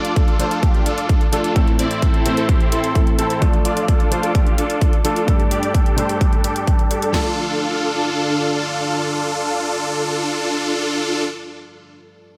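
A huge, bright supersaw riff sits up front in this anthemic, euphoric festival progressive house excerpt at 129 BPM in D minor, its detuned chords moving through Dm, Am and Gsus2 with phaser, delay, sidechain pumping and a low-pass filter sweep across the first 7.1 seconds. A punchy, layered big-room drum kit of kick, snare, toms and crash drives it alongside an electronic hi-hat, both in studio reverb, until the hi-hat drops out at 7.1 seconds and the kit at 7.2 seconds. A worn baby grand piano with long sustain and delay, and a thick, warbling vintage pad with chorus in the background, both pump under the sidechain, and the piano carries on alone to 12.4 seconds.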